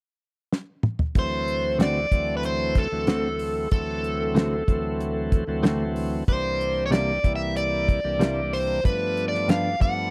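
A damped 1970s drum kit opens with a fill at 0.5 seconds, with a fat snare and tight kick up front, launching a laid-back, rollicking straight-eighth soul blues at 94 BPM where a biting overdriven lead guitar carries the melody, a shouting tonewheel organ with slow rotary speaker and light overdrive fills out the accompaniment, and a twangy, compressed, direct-recorded clean electric guitar adds stabs over D7, C7 and G7, all captured in a dry, close 1970s-style studio sound with a small room ambience.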